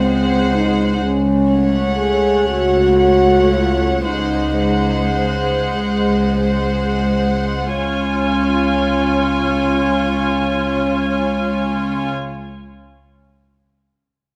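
Classical and serene, this tender excerpt in Db major drifts in a rubato 6/8 at roughly 28-44 BPM, slowing over its first 7.8 seconds as one violin section sings the melody over a second violin line with a smooth top, a viola section's accompaniment and an up-front cello section holding a low Db bass, all bowed sul tasto with soft attacks and light vibrato for an intimate, close sound, while a mellow French horn section sustains chords that move from Ab7 and Gb minor over a Db pedal to settle on Db at 7.8 seconds, bathed in a moderate scoring-stage reverb.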